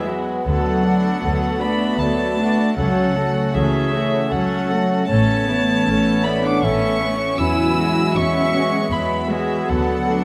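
A moderate scoring-stage reverb gives this short cinematic film-score excerpt a spacious but focused sound, tender and hopeful in mood, moving at a rubato 78 BPM in 3/4 and set in A major. A pure, floating solo violin carries the melody with a soft attack and smooth top, joined by a distant, rich violin section playing the melody lower down. A second violin section and an airy, silvery flute with vibrato share a second line. Beneath them, a close viola section plays sul tasto accompaniment, a roomy French horn section holds sustained chords in the background, and a ringing, fingerpicked concert harp spins arpeggios. The bass comes from an intimate, dark cello section with light vibrato and a woody double bass section, over harmony that moves from Bm7/D through F#m/C#, Aadd9 and Eadd9 before returning to Bm7/D at 9.7 seconds, with every part sounding from start to finish.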